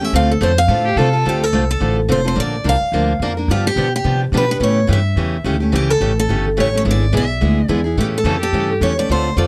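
Bittersweet and swinging, this dry, close-miked snippet of jazz manouche in D minor at 214 BPM opens with a solo from a bright picked steel-string acoustic guitar playing the melody with audible finger squeak, joined by a second picked steel-string guitar comping through Dm7, Bb, G7 and A7 and a woody, thumpy pizzicato upright bass sitting up front, while a boxy bowed violin adds brief expressive phrases with vibrato and portamento at 0.9 and 8.3 seconds.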